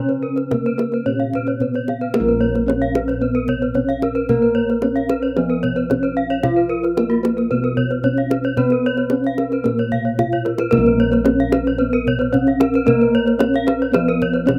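Shimmering and brilliant, this Balinese gamelan passage moves at 112 BPM in a straight 4/4, with a bronze metallophone carrying the melody in a mellow, soft tone from padded disc mallets, its paired tuning producing shimmering beats up front. Two more metallophones spin arpeggios above it with slapback echo, one struck with a wooden mallet and the other with a bright horn mallet, both close-miked and dry, while bossed gongs supply a round, airy bass and a tight kendang played with hard hands adds a drum fill at 10.3 seconds. The sound is outdoor and nearly reverb-free, and the recording is cut from a longer piece.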